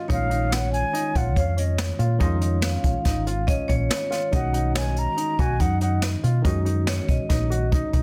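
Progressive instrumental band music in 5/4 at 142 BPM, this bright, intricate passage is cut from a longer piece, with an airy, expressive concert flute carrying the melody from 0.1 to 6.0 seconds over chords moving from A#m to B. A baby grand piano plays natural-toned arpeggios, a worn, slightly out-of-tune tine electric piano with light overdrive fills in accompaniment, and a metallic, ringing vibraphone through digital delay adds a second line. Underneath, a dark, round hollow-body fingered electric bass and an up-front brush drum kit with a boomy kick and a softly clipped snare drive the groove, all in light reverb with a dense, heavily limited modern master.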